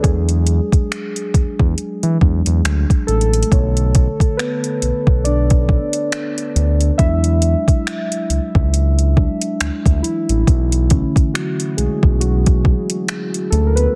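Longing and moody, this short cut from a longer piece sits in a slow, swung contemporary R&B groove in 4/4. Muted, felt-like synth keys carry the lead for the full 14.0 seconds, their dark, intimate tone blending triangle and sawtooth waves with a noise layer and a chorus sheen, each note striking quickly and then decaying. Beneath them, a smooth synth bass holds long, mellow notes with a quick attack. An electronic R&B kit of soft kick, metallic hi-hats and finger snaps sits up front with an overdriven edge. The harmony alternates between E7 and Bm7, and the dry, dense, heavily limited mix keeps every part close and present.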